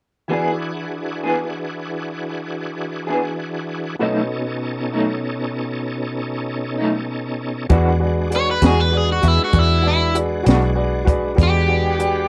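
A crunchy, overdriven lead guitar stands out in this gritty, rollicking slow blues excerpt, picking a bright solo melody up front from 8.4 seconds. The piece moves at 65 BPM in a straight 12/8 in E mixolydian, with the chords moving from E7 to B7 and then E9. From 0.3 seconds, a clear, woody upright piano with audible action noise and long sustain shares the accompaniment with a slightly broken-up, lo-fi electric guitar played through a small old amp and treated with tremolo. Beside them, a shouting tonewheel organ holds sustained chords through a slow rotary speaker and chorus vibrato, its key click audible. At 7.7 seconds, a compact cocktail drum kit with a high-tuned snare and punchy kick enters together with a dark, round, foam-muted fingered bass. Small room ambience frames a dry, close 1970s-style studio sound.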